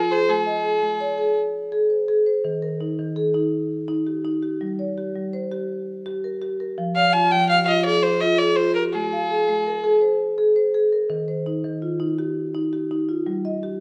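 Light reverb frames an up-front sound in this short cut from a longer piece of southern African traditional music, rippling and warm at 111 BPM in a straight 12/8. A marimba struck with soft mallets carries woody, round arpeggios from start to finish over chords moving through Ab, Eb, Gm and Fm. A single bowed fiddle with a nasal, reedy gut-string tone sings the melody in brief phrases, first at the opening and again from 7.0 to 10.0 seconds.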